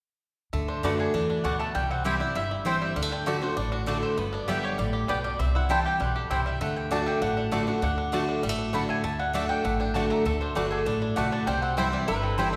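Bathed in the lush reverb of a church or concert hall, this joyful, rustic bluegrass passage at 197 BPM in D mixolydian sets a twangy, fingerpicked banjo and a mellow double-string mandolin on melody over a bright, full-bodied dreadnought guitar up front, a woody pizzicato upright bass and a second mandolin's picked stabs, moving through D, C and G, with a metallic, nasal slide resonator guitar adding a second line from 10.3 s.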